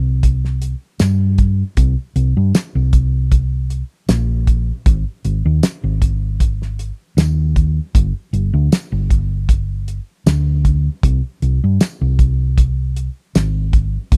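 A cloth-damped acoustic drum kit sits up front, with a fat snare, a tight kick, hi-hat and tambourine sounding thuddy and small-room close, its top end rolled off. This brief excerpt of straight-eighth soul blues moves at 78 BPM in 4/4 in C minor, with a light 54% swing on the sixteenths and tuning set to A4 = 435 Hz. A hollow-body, short-scale electric bass opens the piece at 0.0 seconds, fingered and amped, with a dark, round and punchy tone that stays between G1 and G2. The drums join at 0.2 seconds, and both parts carry on together to the end at 14.2 seconds. The mood is smoky and brooding, and the sound is dry and close, with little reverb, in the manner of a 1970s studio recording.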